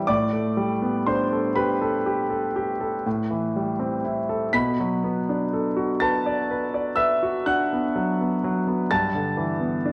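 Heard through worn, warbling cassette tape and a wet recital-hall reverb, this nocturnal, wistful fragment of impressionist classical solo piano drifts in a rubato 9/8 at 41 BPM, its clear, intimate concert grand sitting up front with audible action noise, deep bass and long sustain as it moves from Gadd9/A through Am9 and Bm7 to G69 at 8.9 seconds.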